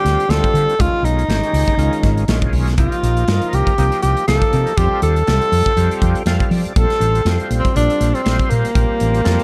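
A breathy tenor saxophone leads this funky, bright jazz fusion excerpt at 120 BPM, its smooth-topped, jazz-style line carrying light vibrato, scooped notes and a slapback echo over a swung sixteenth-note feel moving through Dm7, Db9, Cm7, Fadd9 and Bbsus2. A growly, round fretless bass with analog chorus sits up front. A gritty, overdriven tonewheel organ with key click, slow rotary speaker and chorus vibrato accompanies them and adds a fill at 6.0 seconds, while a polished studio kit with punchy kick and medium-tuned snare plays from a small, airy room in a dark production with little reverb.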